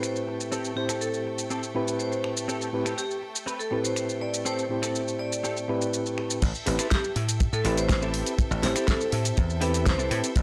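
The recording is dry and gritty, with light reverb and a small-room ambience, in a groovy, cosmic nu-disco cut from a longer piece. A reedy, mellow electric piano sits up front with fast tremolo and sidechain pumping, accompanying over an Am7 chord, while a biting studio violin section holds sustained chords that pump too. A vibraphone struck with hard mallets carries the metallic, ringing melody through an analog delay. From 0.3 s a clean, direct-recorded electric guitar plays a picked riff through ensemble chorus and a low-pass filter. A pop kit of fat snare, hi-hat, shaker, finger snaps and crash keeps the beat throughout, and at the drop at 6.4 s a tight acoustic kick and a punchy thumbed slap bass with tube saturation enter up front.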